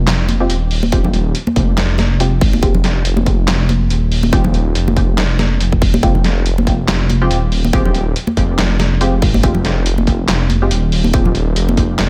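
Built on a half-time 4/4 pulse at 141 BPM with a 56% swing on the sixteenths, this heavy, cavernous deep dubstep passage in F minor is cut from a longer piece and sits on an Fmadd9 chord throughout its 12.1 seconds. A dark, detuned saw bass opens at 0.0 seconds, up front and rumbling between Eb1 and Ab1, its saturated unison tone beating against itself. A trip hop sampler-style kit of handclaps, hi-hat and a medium-tuned snare comes in almost at once, sounding muffled, pitched down and tape-warm, while an overdriven electronic kick drum joins at 0.9 seconds with a punchy, layered thump. Bright, close congas with hard hands sit in the background, trailed by dub echo. A filtered dub chord stab plucks between Ab3 and G4, its muted, evolving detuned sawtooth tone carrying subtle chorus and dub echo. The whole passage sits in a digital ambience that deepens its cave-like weight.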